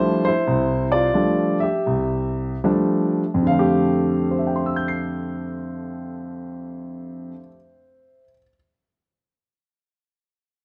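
Captured with close, detailed microphones in a moderately reverberant large studio, this playful, relaxed fragment of solo jazz in F major features a concert grand piano with a deep bass and an open, up-front tone, played rubato in 4/4 with a swung eighth-note feel at 70-98 BPM, opening on an F69 chord and slowing down over the first 3.5 seconds before moving into a new section that runs to 6.8 seconds.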